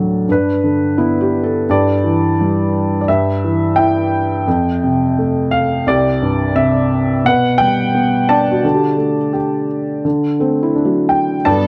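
Acoustic folk-pop ballad with a nostalgic, hopeful mood, led by a woody upright piano melody with long sustain that sits up front in a dark production with light reverb. A soft, felt-muted second upright piano adds mellow, intimate arpeggios from 1.0 s and returns at 8.3 s over chords moving from Gadd9 through F and Csus2 to Dsus4 and D. A distant bowed string section enters only at 11.5 s with sustained chords, its vibrato and portamento giving an expressive, soft-attacked glow as this fragment of a longer piece breaks off.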